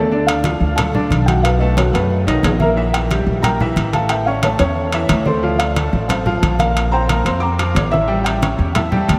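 Salsa in D minor at 180 BPM, danceable and passionate, where a soft, felt-muted upright piano with audible action noise carries the melody through analog chorus and diffuse delay over a brilliant, long-sustaining second upright piano, a woody, thumpy pizzicato upright bass up front, low-tuned congas under soft hands in the background from 0.1 seconds and ringing, saturated metal-shell timbales from 0.3 seconds, all soaked in a dreamy cathedral reverb as the chords move from Dm through B7 and Edim/Bb to a closing A7 in this short cut from a longer piece.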